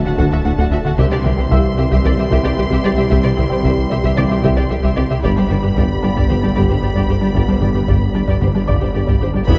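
A vast, brooding hybrid orchestral and electronic film cue at 113 BPM opens at once with a lush bowed violin melody high above dark French horns, mellow trombones and a soft, flute-like hollow pad holding sustained chords, while a woody wave-folded pluck ripples through arpeggios and a rubbery square bass drives a riff over a thick, beating, menacing detuned saw bass. A shadowy studio violin section adds a second line, with rich violas, focused cellos, distant double basses, a tuba and hard-stick taiko drums joining within the first 0.2 seconds, while a felt-muted upright piano adds a faint, intimate texture with audible action noise. The harmony moves from D to C to G under a roomy concert hall reverb, and a huge impact lands at 9.5 seconds before the cut.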